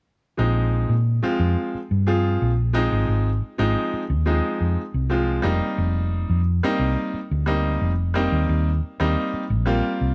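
A bright grand piano and a hollow-body short-scale electric bass, played fingered, enter together at 0.4 s in this slick, nocturnal jazz excerpt, cut from a longer piece. The tempo is 89 BPM in 4/4 with a straight feel, and the tuning sits at A4 = 439 Hz. The piano comps in its middle register with a brilliant, open tone and short sustain, voicing a Bb9sus4 chord that moves to F9sus4 at 5.5 s. Beneath it, the amped bass is dark and round, its hollow-body character carrying low in the range and sitting slightly louder than the piano. Both instruments are placed up front in a dry sound with little reverb, and they play together until 10.1 s.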